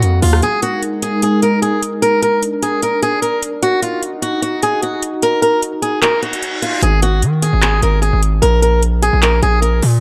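The picked swing-style acoustic guitar sits up front throughout this eerie, hard-hitting trap excerpt at 150 BPM in a half-time feel, its bright, boxy melody softened by a low-pass filter and tape echo over a warbling, nostalgic pad of detuned, ring-modulated chords that drops out at 6.8 seconds. A reverse cymbal leads into that point, where the heavy, saturated 808-style bass, heard only briefly at the start, returns with aggressive distortion beneath a trap kit of overdriven handclaps, metallic hi-hats and rim clicks. The production is dark with light reverb, moving through Absus2, Bb and Ebm before settling on Ab5 and Absus2/Bb.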